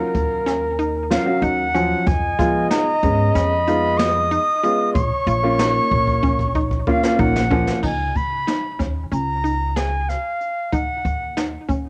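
Tense and driving, this progressive instrumental excerpt runs at 187 BPM in 9/8, with an up-front, reedy silver concert flute carrying the melody from 1.1 seconds over a distant, mellow flugelhorn second line touched with vibrato and analog delay, a grand piano with short sustain, and a bright, squelchy blip pluck cycling arpeggios through chorus and delay. Underneath, a woody, thumpy pizzicato upright bass and a roomy brush kit with dark cymbals and a boomy kick hold the pulse, the drums throwing in a fill from 5.9 seconds before the flugelhorn and piano drop away around 7.8 seconds. Chords move from Ebm7 through Fdim and Bbm to Dbsus2 and back to Ebm7, all in the hazy light reverb of a home cassette recording.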